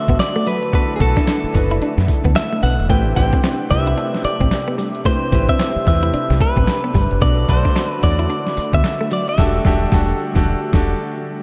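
A thumpy, gritty boom bap drum kit, pitched down and up front, drives this confident, slick new jack swing cut at 111 BPM with a swung sixteenth feel, alongside a round, punchy fingered bass and a bright concert grand piano comping over chords moving from Bm7 through Am9 to Em11. A clean, direct electric guitar carries the melody through a diffuse ambient delay, while a second twangy, scooped guitar plays a chorused riff in the background and a brassy, detuned sawtooth pad holds sustained chords with a filter swell and vibrato. The whole excerpt sits in a dreamy cathedral reverb, with a band accent from 9.4 seconds and a short break at 11.0 seconds.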